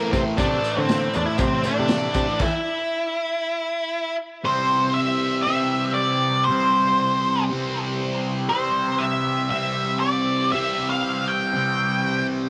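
Kaleidoscopic and hazy, this psychedelic rock passage in C major moves at 118 BPM in a straight 4/4 and is cut from a longer piece. An octave-fuzz lead guitar carries the melody up front, its dark, distorted tone trailed by tape echo, while a double-tracked fuzz guitar grinds out a compressed riff colored by a phaser. Beneath them a reedy, breathing pedal harmonium holds mellow sustained chords in the background throughout. A picked electric bass with a growly, foam-muted edge and a crunchy breakbeat kit with a tight kick, dark cymbals and a gritty, rolled-off top drive the opening over an Am chord, then drop out at 2.4 seconds. From 4.5 seconds the harmony shifts to C as the guitars and harmonium continue in a small room with light reverb.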